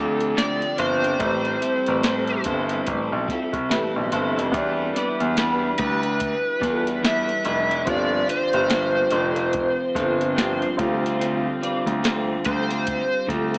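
Guitars and pianos open together in this wistful, lonely bedroom-pop excerpt in A minor, with a soft vintage rhythm box joining at 0.2 seconds to set a slow 72 BPM pulse in 4/4 with a gentle swing on the sixteenths. Up front, an overdriven slide guitar played with fingerpicks carries the melody, coloured by analog chorus and tape echo. Behind it, a clean, hollow-bodied semi-hollow electric guitar adds a picked second line through ensemble chorus. A compressed, slightly broken-up electric guitar picks the accompaniment with lush chorus and warbly pitch drift. A woody, slightly detuned upright piano with a cassette-tape tint sits in the background, while a polished concert grand holds down the deep bass line. The drums offer a deep kick, crisp snare and metallic hats roughened by 12-bit sampler grit, and the echo-heavy, lightly reverberant mix has a small-speaker sound as the chords drift from Dm11 through Am7, Em7 and G7sus4 to Dm7.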